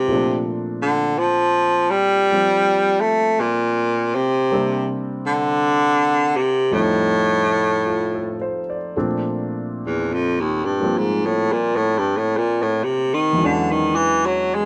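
Jazz ballad in a romantic, intimate mood, cut from a longer piece, with a baritone saxophone carrying the melody over a concert grand piano's accompaniment, both heard from 0.0 to 14.7 s. The saxophone sounds punchy and forceful up front, with vibrato, scooped notes and a roomy air, and it takes a solo from 8.9 s. The piano stays lower in the mix, natural and warm with deep bass and audible action noise, all set in light reverb.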